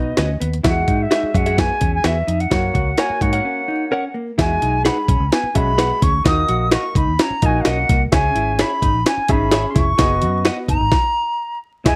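Joyful, danceable uptempo 1960s-style soul at 128 BPM, where an expressive silver concert flute with pure vibrato carries the melody over clear, polished baby grand piano, a dark hollow-body jazz guitar riff, round foam-muted fingered bass, bright scooped stabs from a direct-recorded clean electric guitar, and a gritty, pitched-up jungle sampler-style drum kit with a thumpy kick and high-tuned snare up front, all under light reverb and vinyl crackle, with a break at 3.5 seconds and a stop at 10.9 seconds in this cut from a longer piece.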